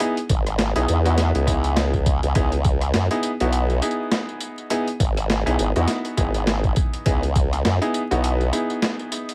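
A formant-swept wobble bass anchors this gritty, funky glitch hop excerpt at 102 BPM in C# minor, its sawtooth-and-sine tone up front with chorus and overdrive, entering at 0.3 seconds and holding until 8.5 seconds. A bright, worn baby grand piano plays short stabs over a C#m9 chord, its audible action noise and intimate presence shaped by sidechain pumping and delay, while a pitched-down, overdriven boom bap kit with a high-tuned snare, rim click, hi-hat and tambourine swings on the 16ths. A thumpy electronic kick, re-recorded in a large room, drops out at 7.5 seconds, and vinyl crackle and light reverb sit beneath it all.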